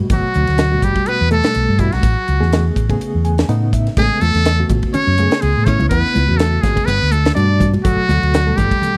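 Electric jazz fusion with a funky, slick mood, moving at 124 BPM in 4/4 with a light sixteenth-note swing in G major, cut from a longer piece. A muted trumpet carries the melody up front, its metal mute giving a buzzy, thin tone with light vibrato and a breathy edge in a jazz solo style. Beneath it, a barky, reedy electric piano comps with light overdrive and a fast tremolo through its built-in speakers, stepping out for a fill from 3.0 to 4.0 seconds, while a clean, compressed hollow-body jazz guitar plays a dark second line in the background. A round, punchy fingered electric bass anchors the low end, and a polished fusion drum kit with a high-tuned snare, punchy kick, hi-hat and ride cymbal keeps the groove, joined at 4.2 seconds by ringing, medium-tuned congas set back in the mix. The harmony moves from Gmaj9 to Amaj9 and back to Gmaj9, and the whole track has the dry, close feel of a 1970s-style studio recording with a touch of studio reverb.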